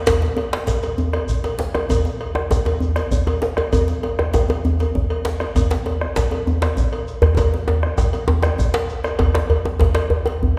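Set in the lingering reverb of a recital hall, this festive, powerful fragment of a West African drum ensemble rolls along in 12/8 at 132 BPM, with a dark, up-front bombo and two close, dry djembes, one warm and one cracking sharply at the front, alongside a metallic cowbell and a grainy shekere that drops out at 9.1 seconds, just as a drum fill from 7.4 seconds gives way to a new section.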